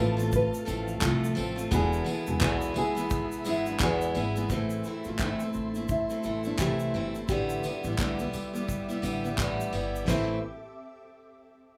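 A swung sixteenth-note groove at 86 BPM in 4/4 drives this tender, wistful acoustic pop excerpt in A minor, where a dark, thumb-plucked nylon-string guitar carries the melody through a digital delay over a full-bodied, up-front picked steel-string guitar and a woody pizzicato upright bass. A very quiet, intimate upright piano with audible action noise and a glassy, ethereal FM pad with ensemble chorus and its own reverb fill in the sustained harmony, moving from F/A to E, then Am and Em7/A. A grainy egg shaker enters at 0.2 seconds and a loose indie drum kit with a fat snare, tight kick, crash, handclaps and tambourine joins at 0.3 seconds, all within a rough home-demo mix with small-room ambience.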